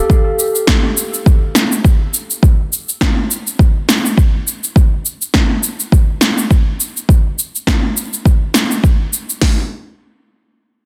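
A deep house drum kit stands out, up front and overdriven, with a deep kick, punchy snare and metallic hats, layered with an electronic shaker and snare drum that carry the same gritty drive through to about 9.4 seconds. This organic downtempo cut has a meditative, mystical mood and a swung 4/4 feel. A fingerpicked concert harp opens with ringing arpeggios for the first 2.0 seconds, softened by a low-pass filter and tape echo, over a dense, heavily limited modern master with little reverb.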